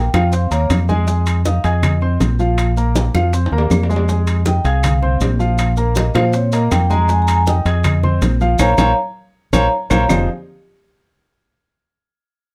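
A mellow, soft-mallet vibraphone solo with its motor off rings out over a warm grand piano and a dark, punchy fingered electric bass that sits up front, opening this driving, sultry Afro-Cuban jazz excerpt at 160 BPM. Thick-skinned congas, round low-tuned bongos, ringing metal-shell timbales, woody claves and grainy maracas fill in the percussion beneath light reverb, while the vibraphone pauses at 2.2 seconds and returns at 4.5 seconds. The harmony rests on Bbsus2 until a drum fill and band accent arrive at 8.6 seconds on Bbmadd9, before the piece turns to Fm7 at 10.1 seconds.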